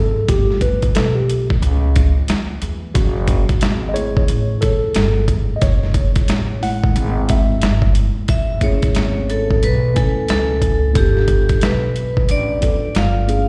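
A mellow tine electric piano with slapback echo takes the lead from the start over a woody, pizzicato upright bass on gut strings, with a gritty, pitched-down boom bap drum kit with a thumpy kick and high-tuned snare entering just after, in this nocturnal, smoky jazz-hop groove at 90 BPM with a swung 16th feel, moving between G9 and F#m9 before a ringing hard-mallet vibraphone with slow motor vibrato and tape echo carries the melody from 8.3 seconds, joined faintly at 12.3 seconds by a soft-mallet vibraphone second line, all heard as a live gig through the venue's PA in recital hall reverb.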